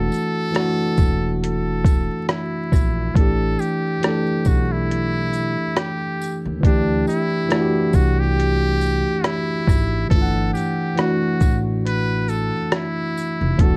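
A muted trumpet carries the melody in jazz style, its metal mute giving a buzzy, breathy tone with a soft attack that stays thin and slightly dulled by a low-pass filter. This reflective, nostalgic lo-fi hip hop piece moves at a relaxed 69 BPM in 4/4, with a lazy swing on the sixteenths. Up front, a worn, slightly out-of-tune tine electric piano supplies the accompaniment, lightly overdriven and softened by cassette tape character. Beneath it, a woody pizzicato upright bass anchors the harmony, while a compressed, pitched-down, sampler-style drum kit with a thumpy kick, hi-hat, rim click and shaker sits prominently in the mix. A jingly tambourine adds faint shimmer in the background. Vinyl crackle and a moderate studio reverb frame the sound as the chords drift through suspended colors from E9sus4 to Asus2, D9sus4 and a rootless Gsus2 in this excerpt cut from a longer piece.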